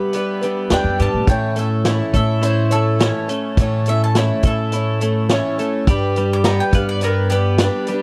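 A bright bowl-back mandolin takes the solo on its double strings, entering at 0.7 s over a warm, open-road folk rock and heartland rock groove in a steady straight four. A shimmering, octave-doubled twelve-string acoustic guitar picks the accompaniment with a touch of finger squeak, a clean, twangy twelve-string electric guitar with subtle chorus plays a riff, and a reedy pedal harmonium breathes very quiet sustained chords underneath. A woody, thumpy pizzicato upright bass and a vintage kit with a punchy kick and rolled-off top sit up front in the dry, close 1970s-style sound as the harmony moves from G to A and back to G at 5.9 s.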